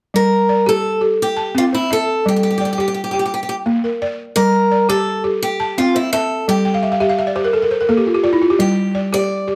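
West African traditional music in 12/8 at 114 BPM (dotted quarters) and G dorian, flowing and hypnotic, with an up-front balafon struck with soft rubber mallets playing dry, buzzing, woody arpeggios from G3 to A5 beneath an equally close, picked melody on an old ladder-braced acoustic guitar whose boxy tone and aged strings stay between E4 and D5, the balafon breaking into a fill from 6.7 to 8.6 seconds, all captured with detailed close microphones and light reverb in this short cut from a longer piece.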